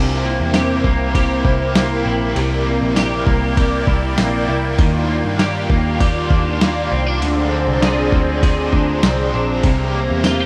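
A swirling, detuned sawtooth pad through phaser, a twangy, slightly broken-up guitar playing arpeggios up front with analog chorus and tape echo, a bright overdriven guitar with tremolo and lush chorus, and a round, foam-muted picked bass open this ethereal, dreamy 99 BPM dream pop excerpt over C7, Ebmaj9 and Bb9 chords, joined at 0.5 s by a muffled, pitched-down sampler-style drum kit with a thumpy kick, snare, ride and tambourine, in a rough home-demo mix with light reverb.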